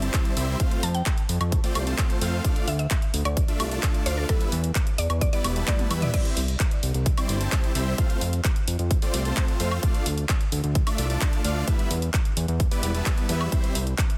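Festival progressive house in a straight four, uplifting and anthemic, heard here as a short cut of a drop that repeats over a cycle of C, F, Dm and Em chords. A punchy, layered electronic kick sits up front while an overdriven big-room kit adds crash cymbal, handclaps, hi-hat, toms and woodblock, with a drum fill from 5.7 to 6.1 seconds leading into the second pass. Huge, lush supersaw chords built from detuned sawtooth unison ring out bright and sustained, pumping against the sidechain and trailing dub echo. Underneath, a fat analog bass mixes sawtooth, square and triangle tones with ring modulation and a filter sweep, also pumping. In the background, a woody, round mallet-like pluck carries the melody with chorus and dub echo until 6.2 seconds, and the whole mix is dry, dense and heavily limited.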